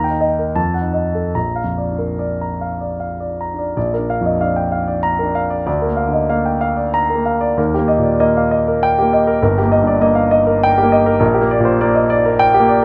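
A warm grand piano opens alone, up front in a light reverb, setting out a brooding, passionate romantic character piece in Bb major. The playing moves in 3/4 with a rubato feel, the tempo drifting between 72 and 103 BPM. The harmony begins on Eb, passes through F7b9 and settles on Bb by 1.4 seconds, closing the opening section. From 3.8 seconds a second section unfolds, leaning on Bb/D, Eb and Eb/G before arriving at Gm/Bb near 11.2 seconds. The part spans a range from G1 to Bb5, and the passage is cut from a longer piece, ending at 12.8 seconds.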